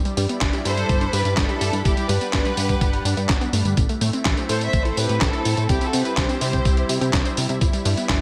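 Danceable and romantic, this short cut from a longer italo disco track moves at 125 BPM in a straight 4/4, sitting in G major over chords that shift from G6 to Am, then C, and back to G6. A thick, detuned pad holds sustained chords throughout, its chorus and phaser giving it a bright sheen inside a shimmer reverb, while a glossy, dark synth bass built from pulse and sawtooth waves carries the low end with a chorused, retro tone. Tucked into the background, a warbling unison pluck spins arpeggios through tape echo and shimmer reverb. The drums pair a gritty, dusty sampler-style kit of handclaps, hi-hat, snare and tambourine, its medium-tuned snare bathed in gated reverb, with a compressed, thumpy electronic kick that arrives at 0.4 seconds. From 0.7 to 7.1 seconds a smooth symphonic violin section sings the melody with vibrato, roughened by 12-bit sampler grit and trailed by digital delay and shimmer reverb. 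The whole mix sits in a light digital ambience.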